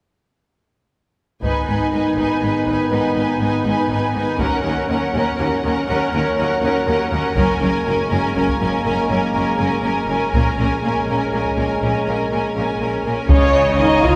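At 1.4 s a dramatic, epic orchestral film cue in G# minor and 6/8 at 81 BPM rises in a cavernous church reverb, with heavy-stick taiko under distant, intense violins carrying the melody, a second soft-edged violin line, lush violas, dark, roomy French horns holding chords, focused cellos and clear bowed double basses building from G#m through A#m7 until an impact at 13.3 s brings a very quiet trombone chord and a barely audible sub drop at 13.8 s.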